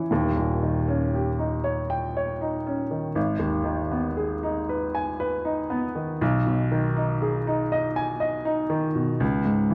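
A woody upright piano opens this wistful, melancholic romantic nocturne, playing alone in 6/8 with free-flowing rubato and a slow, unhurried pace. Up front and intimate, its short sustain and audible action noise give the vintage instrument a close, tactile character as the harmony moves from D#7 through G#m and G#m/B to a bare C#5 at 9.2 seconds. A moderate recital-hall reverb and dark production surround this brief passage, which is cut from a longer piece.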